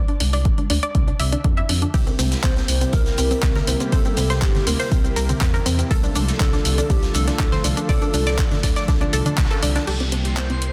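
Uplifting and euphoric, this excerpt of progressive house at 121 BPM in C mixolydian opens with a gritty, chorused analog pluck arpeggio under a filter sweep, riding a dark, rumbling detuned saw bass that pumps with the sidechain, while a tape-warm deep house kit of crash, handclaps, hi-hat and shaker, very quiet congas and bongos, and an up-front deep electronic kick drive the straight 4/4 groove. From 1.9 seconds a lush, thick unison pad sits in the background, joined by a saturated, very quiet garage kit of hi-hat and snare, and at 2.4 seconds a punchy, catchy square-wave lead with tape echo carries the melody over chords moving from Dm to C7 and Dm/C. A band accent lands at 9.4 seconds before a background downlifter and a twinkling granular shimmer close the clip, all within a dense, heavily limited master with light reverb.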